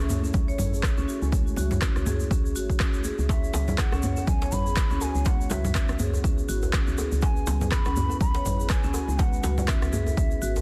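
This afro house excerpt opens on a dark, detuned analog pad holding sustained chords in the background, a close-miked marimba playing arpeggios with dub echo, and a woody, round FM bass, all three breathing with sidechain pumping. Almost at once the percussion arrives: a deep house kit with handclaps, rim click and toms, ringing high-tuned congas struck with hard hands, a grainy egg shaker, and a punchy, layered electronic kick that sits up front. The groove swings on the sixteenths and feels driving yet spiritual, with the chords moving from A to C#m7. At 3.3 seconds a breathy, mellow bansuri enters with a bamboo tone, vibrato and rolled-off highs, its melody trailing dub echo, while a tight, cracking djembe joins the background percussion. The sound is dense and heavily limited, set in studio reverb, and the passage is cut from a longer piece.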